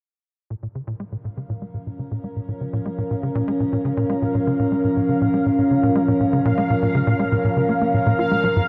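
Ambient, sequencer-driven space music in Bb minor at 121 BPM, this short cut from a longer piece feels expansive and cosmic, resting on a single Bbm chord from 0.5 seconds. A tight sequencer bass opens the passage with a punchy, driving riff, its dark sawtooth and square-wave tone shaped by a fast-attack filter pluck and colored with analog chorus, cassette tape character and delay. At 2.3 seconds an evolving wavetable pad arrives with sustained chords, its detuned unison of triangle and sine waves swelling in with a slow attack and morphing under chorus, built-in reverb and shimmer reverb for a mellow glow. A bubbling stepped-filter texture follows at 2.9 seconds, holding a resonant, detuned sawtooth note high above as random filter steps flicker through its own chorus and reverbs. All three parts fade in, and the whole mix sits in a huge, wet ambient reverb with a long 8.1-second tail.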